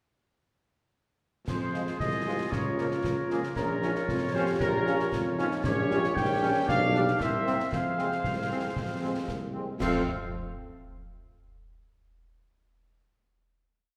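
Stern and martial, this short, complete march for wind band moves at 115 BPM in a straight 2/4 in F minor. Entering at 1.5 seconds, a tight trumpet section carries the melody up front with a mellow, smooth-topped tone and light vibrato, while a clear, punchy woodwind section adds a second line of sustained chords. Beneath them, a present tuba holds down the bass on the beats with sustained notes, and the percussion of concert snare, clash cymbals and concert bass drum sets a marching snare over a bass drum on the beat, the cymbals dark. A very quiet, distant French horn section supplies after-beat and sustained chords, a vintage-sounding trombone section sits in the background with short accented and held chords, and a close-miked euphonium threads a counter-melody, answering at phrase ends. The harmony travels from F minor through darker chromatic chords to a C7, and the piece closes on a final F major chord at 9.8 seconds, all heard from further back in a reverberant concert hall.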